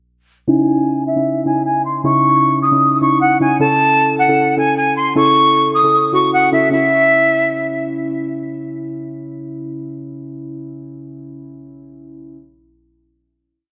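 This short, complete hip hop piece in a trap style moves at 154 BPM in 4/4 with a half-time feel, setting a dark, hard-hitting mood in C# minor. A jazz flute carries the melody from 0.5 seconds, its metal tone airy and crisp with a chiff on each note and an expressive vibrato. It sits up front yet sounds distant through a low-pass filter, repeating like a sampled loop. Beneath it, muted felt-like synth keys play rhythmic chords in a spread voicing, soft and intimate, with a decaying, chorused sound that also passes through a low-pass filter. The opening breakdown carries a filter sweep and moves from C#madd9 to A/C# before settling on a final C# minor chord. The flute stops at 7.8 seconds, and the keys linger until 12.4 seconds over light reverb and a faint mains hum.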